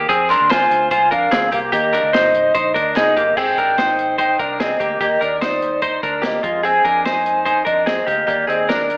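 A dreamy, reverb-soaked mix with a telephone-like tint carries this youthful, breezy stretch of jangly indie pop, where a bright, twangy clean electric guitar plays arpeggios up front through lush chorus, a round, foam-muted vintage bass and a dark-cymballed vintage drum kit with a punchy kick sit beneath, a breathy, mellow concert flute with expressive vibrato carries the melody from 0.3 seconds, and very quiet, hollow group handclaps join only until 3.1 seconds.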